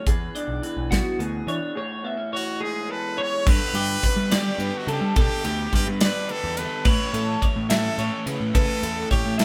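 Math rock and midwest emo in 6/8, this bright, intricate excerpt sounds like a band playing live in one room with light reverb. A slightly broken-up, lo-fi guitar through a small old amp sits up front for the first 3.5 seconds, while a twangy, clean twelve-string guitar plays arpeggios over a growling, overdriven bass and a punchy, polished studio drum kit with bright cymbals. A brilliant, close-miked trumpet carries the melody with light vibrato from 2.4 seconds, and at 3.5 seconds a crunchy, double-tracked guitar riff enters in the background as the harmony moves from E9 and Amaj7 to G and A.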